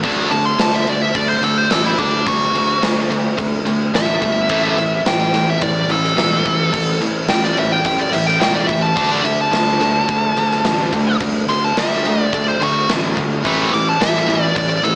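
Menacing and aggressive, this hard rock excerpt in straight 4/4 opens with a huge arena drum kit up front, its punchy kick, medium-tuned snare and bright crash cymbals ringing in a lush hall, beneath a bright distorted guitar riff with slapback echo in the background and a growly, fuzz-soaked fingered bass. From 0.3 seconds a nasal lead guitar with a parked wah takes an up-front solo, spanning D4 to D6 over chords that alternate between D5 and A5. At 4.5 seconds a very quiet, biting overdriven guitar adds a second riff, and the mix carries a big arena sound with a small-speaker edge.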